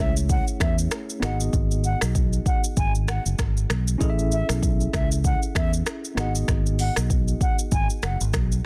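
A pure, crisp-attacked concert flute melody with delay opens this breezy, romantic afrobeats excerpt over a worn, slightly out-of-tune tine electric piano with medium tremolo through a combo amp and a round, punchy fingered electric bass up front, before an electronic afro-pop drum kit of deep kick, metallic hi-hat, finger snaps, rim click and shaker joins at 0.2 seconds, all swinging on sixteenths over an Amaj7 to G#m7 alternation in a dry, dense, heavily limited modern mix.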